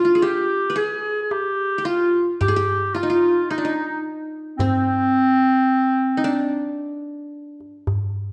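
A straight 10/8 cycle carries this hypnotic, soulful Arabic maqam passage, cut from a longer piece. A warm, roomy clarinet sings the melody up front in classical style, alongside the bright-edged, plectrum-plucked triple strings of the qanun on a second line. A clay-shelled darbuka enters at 1.3 seconds with soft hands on natural skin, close and dry, while a recital hall reverb gives the clarinet a distant glow until it stops at 6.7 seconds.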